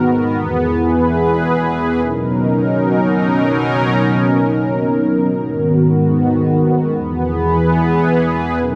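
A huge ambient reverb with a 7.8-second tail washes over this short hip hop excerpt, giving it a hazy, spacious atmosphere. A single sweeping, resonant pad plays alone in free time for the full 8.8 seconds, sitting up front in the mix. Its full-bodied tone blends sawtooth and sine waves over a sub octave, spanning E2 to B4, with a slow attack, sustained notes, a filter swell and a chorus effect that keep the sound evolving. The harmony drifts from E to Bmaj7 at 2.0 seconds, then to G#m7 and back to E. The excerpt is cut from a longer piece.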